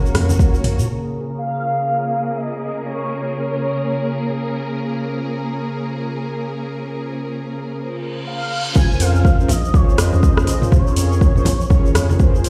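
The recording has a light reverb and the hard, stony ring of a bare room, as if played over a big sound system. This afro house cut from a longer piece feels warm and driving. A smooth, nasal synth lead carries the melody with chorus and tape echo. Clear, bowed strings hold sustained chords under a filter sweep, and mellow, brassy synth stabs run through the whole cut with chorus and digital delay. After a brief opening hit with round, dark analog bass, drums, congas and a grainy shaker, a reverse cymbal builds from 8.1 seconds into a drop at 8.8 seconds. There the up-front deep kick, a deep house kit with metallic hats, soft-handed congas, the shaker and the pumping bass return beneath an electronic impact and the returning lead.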